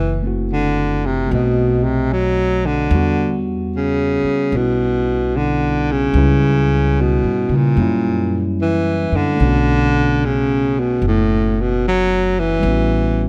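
Lightly reverberant and intimate, this romantic jazz ballad excerpt swings gently at 74 BPM in 4/4, with a dark, smooth baritone saxophone carrying the melody up front over woody pizzicato upright bass, while a clean tine electric piano enters at 0.2 s with accompanying chords through a minor progression that settles on A13.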